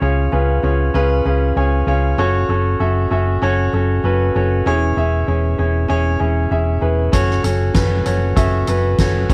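Swung sixteenths at 97 BPM in 4/4 drive this dramatic piano-driven pop excerpt in F# minor, where a clear, up-front concert grand piano with deep bass carries the accompaniment and plays a fill from 1.2 to 2.2 seconds over a dark, round, hollow-body fingered electric bass, moving from C# through F#m and C#m/E back to F#m before a soft-mallet drum kit with a fat snare and punchy kick enters at 7.1 seconds, all in light reverb.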